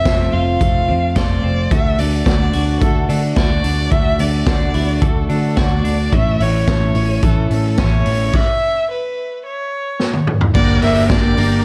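Nostalgic and bright, this jangly indie pop piece, cut from a longer work, sets a distant, bowed violin melody with vibrato and portamento over a full-bodied jumbo steel-string acoustic guitar, twangy, compressed twelve-string electric guitar arpeggios, a round, foam-muted vintage electric bass and a gritty, saturated garage drum kit sitting up front. After a stop at 8.3 seconds, a drum fill at 10.0 seconds leads into a new section as a buzzy combo organ and a shimmering, slow-attack string machine with ensemble chorus slip in very quietly at 10.5 seconds. Light reverb and a cassette tape sound give the whole piece a vintage haze.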